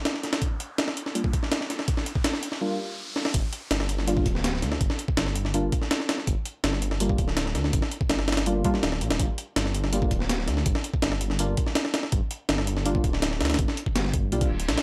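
A dry, gritty hardware recording in a digital ambience carries this dark, atmospheric drum and bass and jungle excerpt at 164 BPM in G minor, where a faint electronic riser builds beneath a compressed, pitched-up sampler-style breakbeat with a thumpy kick and high-tuned snare up front, deep mellow Gm7 chord stabs warble through chorus and dub echo from 1.1 seconds, and after a drum fill the drop lands at 3.3 seconds with a rumbling, beating detuned saw bass, before a reverse cymbal closes out at 14.4 seconds.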